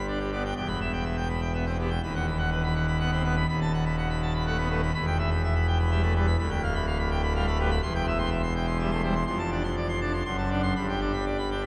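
A classical organ toccata in 3/4 at 124 BPM, this short passage cut from a longer piece sounds majestic and jubilant. A single pipe organ on full registration carries everything alone, its mixtures giving a brilliant, up-front tone with a romantic voicing that spans from a deep D1 to C6 at the top. The harmony moves from G through E minor and B major colour before settling into C major from 6.4 s, then pushes through D7 over F sharp back to G at 10.8 s. The church acoustic is wet, with a long 3.3-second reverb tail that lets each chord bloom into the space. Tuned slightly high at A4 = 444 Hz, the instrument has a bright, ringing grandeur throughout the 11.7 seconds.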